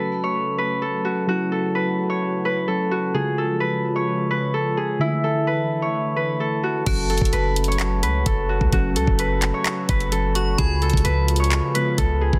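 Hip hop in a trap style with a half-time feel, this menacing, dark piece is cut from a longer work. It opens on a fingerpicked Celtic harp carrying the melody up front, its acoustic tone ringing and softened by a low-pass filter and tape echo. Beneath it, muted felt-like synth keys give a soft, intimate accompaniment with chorus, while a sweeping resonant pad holds sustained chords in the background, its detuned, vintage sawtooth tone warbling and evolving through a filter swell. At 6.9 seconds a hard-hitting 808-style bass and a trap drum kit enter up front, the bass punchy and heavy and the kit knocking with bright hats, handclaps and a crash cymbal. A metallic FM bell joins at the same moment as a second line, its inharmonic, bright, ringing chime sitting high in the background with chorus and tape echo, and all of it runs until 12.4 seconds under light reverb, digital ambience and a dense, heavily limited modern master.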